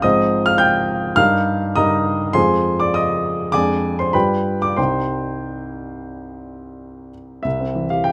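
A grand piano sits up front and alone, its warm, intimate, natural tone carrying the audible clatter of its action. This is a romantic classical character piece in 4/4, played with a flexible rubato that gives its stormy, brooding mood room to breathe. The part spans from C2 in the bass to G6 at the top, so both the dark low register and the bright upper notes come through. The harmony moves through Fm/Ab, Eb/G and Fm before a Ddim/F and a G7 gather tension that settles onto Cm at 4.8 seconds, then shifts to a major C chord at 7.4 seconds. Close, detailed microphones and very little reverb keep the sound dry and immediate in this brief fragment of a longer work.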